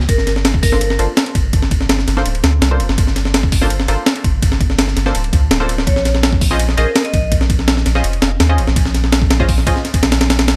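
A gritty, compressed breakbeat kit sits up front in this dark, raw drum and bass and jungle excerpt at 166 BPM in G minor, its thumpy kick and high-tuned snare punching over hi-hat and ride cymbal with a touch of studio reverb. Underneath, a soft, round dub sub bass holds down the low end, while a muted, detuned chord stab with chorus and dub echo enters at 0.7 seconds and moves from Gm11 to Bbm11. A bright, metallic vibraphone with fast motor vibrato rings in the background with dub echo, appearing at 0.1 seconds and returning at 5.9 seconds.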